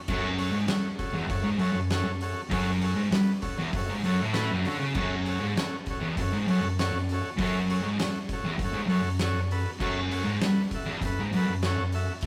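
A thick, distorted fuzz guitar, double-tracked and up front, drives a low picked riff through this swaggering, menacing garage rock fragment, backed by sustained chords from a buzzy vintage combo organ soaked in spring reverb and a gritty, oversized low-tuned acoustic drum kit with a fat snare, punchy kick and dark cymbals pumping in a rough stone rehearsal room.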